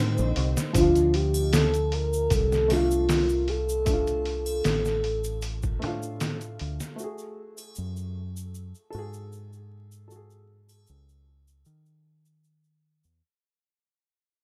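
A gently swung sixteenth-note groove sets a slow, hypnotic trip hop pulse, carried by a sampler-style drum kit with a thumpy kick, medium-tuned snare and hi-hat that sounds pitched down, muffled, compressed and overdriven up front until it drops out at 7.0 seconds. Beneath it, a deep dub fingered electric bass plays round and dark throughout, while a tube shaker and triangle add quiet acoustic texture from a small room. A mellow, woody upright piano provides the accompaniment, its intimate sound marked by audible action noise, short sustain and a vintage character, treated with tremolo, a low-pass filter, tape echo and plate reverb. A veiled, con sordino violin section sustains a brief lush chord at the very start before the pure, breathy sine lead takes the melody, its soft attack shimmering with phaser, subtle chorus and dub echo. The mood stays dark over minor chords, and this cut from a longer piece fades out across its length, with a rough home-demo character and a bed of vinyl crackle.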